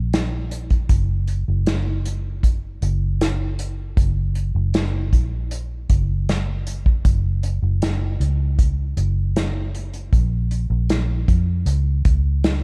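A vintage muted electric bass opens this pop ballad excerpt, its foam-muted, round and punchy tone sitting up front and amped, with an unplugged drum kit of hi-hat, kick and snare joining at 0.1 seconds. The acoustic kit sounds like a small room, played with bundle sticks on a medium-tuned snare and a tight kick, and both parts run together to 12.6 seconds at a straight, unhurried 78 BPM in F# major. The dry, dark production gives the heartfelt, tender mood an intimate, close feel.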